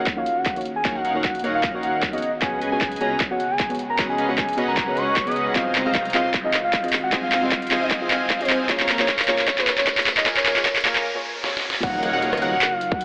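Opening on a very quiet ringing concert harp under a dark, round octave-layered synth lead, soft round pluck and ethereal airy pad, this lush, emotional future bass excerpt in Eb minor at 153 BPM with a half-time, swung feel builds as an overdriven dubstep kit with deep snare and metallic hats and a punchy electronic kick enter, while a bold detuned polysynth riff and a thick detuned saw bass pump under sidechain. A faint riser climbs from 3.8 s, and a brief break gives way at 11.8 s to the drop, where a bright unison pluck flickers over Ebm7, all bathed in huge ambient reverb and a thin AM-radio tone.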